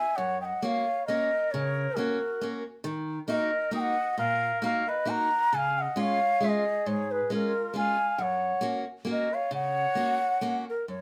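Moderate studio reverb gives this brief excerpt of alpine folk dance music a festive, jolly air, moving at 135 BPM in a straight 3/4 in F# major. A breathy, hollow bamboo bansuri carries the melody up front with vibrato and tongued notes, while a mellow, distant trumpet in classical style plays a roomy second line beneath it. From 0.2 s a picked steel-string acoustic guitar with an auditorium tone supplies the accompaniment, sitting close as it moves through F#, D#m, C#add9 and back to F#.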